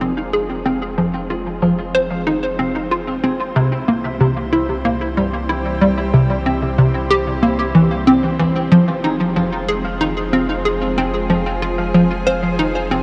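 A straight 4/4 pulse at 93 BPM drives this ambient, sequencer-led space music in F minor, which is expansive and mysterious in mood. Up front, a hollow, bouncy square-wave pluck with a sub octave and a short decay repeats its riff through analog chorus and tape echo. Beneath it, a lush, thick unison pad holds sustained chords with a slow attack and a chorused shimmer, while a deep, round sine sub bass anchors the low end. From 0.2 seconds, a twangy, picked clean electric guitar plays echoing arpeggios in the background, alongside a very quiet, breathy tuned noise texture that drifts like wind. The guitar, pad and sub bass all fade in gradually over a harmony that moves from F minor to C at 3.6 seconds and back to F minor at 8.7 seconds, all inside a dark production soaked in a huge, long reverb.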